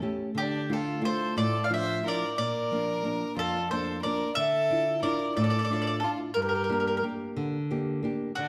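Sunny and romantic, this short excerpt from a longer Italian folk serenade sways in a lilting 6/8. A fingerpicked nylon-string guitar opens alone at 0.0 seconds, its small, warm tone sitting up front with an occasional finger squeak as it lays down the accompaniment. At 0.4 seconds the mandolin takes the melody, bright and woody with the shimmer of its picked double strings, also placed up front. A single bowed violin enters at the same moment with a second line, clear and slightly nasal, carrying an earthy edge, light vibrato and an airy bow, set back a little behind the other two. The harmony moves from Dm to Bb, then Dmadd9 and Gm, and a moderate recital-hall reverb gives the trio a natural sense of space.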